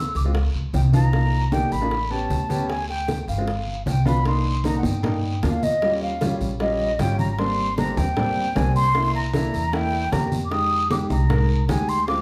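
A growly, woody pizzicato upright bass sits up front in this sultry, fiery Afro-Cuban jazz excerpt alongside a breathy, mellow concert flute carrying the melody with vibrato and a crisp attack, an intimate grand piano accompanying with audible action noise, background percussion of damped, low-tuned congas and tight high-tuned bongos, and a raspy guiro, the band playing live together in one reverberant studio room as the harmony moves through Db9, Cm11, A7, Dm7b5 and G7 before shifting to Cm9 at 4.3 seconds and on toward Fm9.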